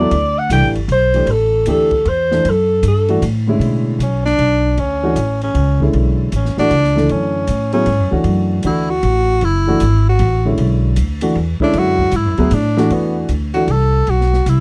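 This spiritual, cool modal jazz waltz opens with a warm alto saxophone solo with vibrato, sounding distant and roomy over a dark, mellow baby grand piano with audible action noise, a woody pizzicato upright bass and an airy drum kit with dark cymbals and a boomy kick. At 4 seconds a breathy tenor saxophone takes over the solo with vibrato and scooped notes, and the piano drops out at 13.7 seconds while tenor, bass and drums carry on. The dry, close sound recalls a 1970s studio, and the passage is cut from a longer piece.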